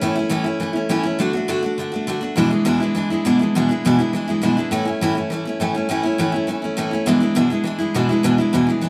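The recording has the open feel of a band playing live in one room, wrapped in a moderate large-studio reverb that lingers for about 1.4 seconds. A lone picked steel-string acoustic guitar carries this rock excerpt from start to finish, its dreadnought tone bright, full-bodied and placed up front. The tempo is a brisk 204 BPM in a straight 4/4, giving the short passage a retro, rollicking mood. In A major, the guitar moves from A through D and E7, returns to A at 4.7 seconds, and lands on E7 again at 7.1 seconds. Ranging from E2 up to F#4, the part spans deep bass notes and higher strings, and the cut lasts just under nine seconds as a fragment of a longer piece.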